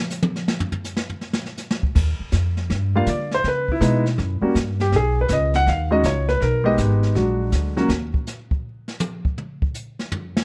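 A brushed jazz kit opens this cool, moody swing fragment alone, its dark cymbals, boomy kick and medium-tuned snare sitting up front in a studio room. A woody pizzicato upright bass enters at 2.0 seconds, and a natural-sounding baby grand carries the melody from 3.0 seconds over rich harmony such as Ebmaj9, B6 and Abmmaj7. The piano drops out around 7.9 seconds and the bass follows shortly after, leaving the brushes to close the fragment under light reverb and a warm, dark production.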